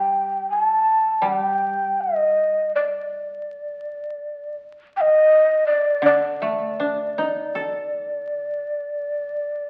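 Calm and austere, this brief fragment of Japanese chamber music unfolds in a free, rubato feel, with an up-front, airy, hollow shakuhachi carrying the melody with vibrato and a crisp, chiffy attack while a dry, woody koto plucked with fingerpicks accompanies softly beneath it until 9.1 seconds, all heard through a moderate recital hall reverb and the crackle of a very old 78 rpm record.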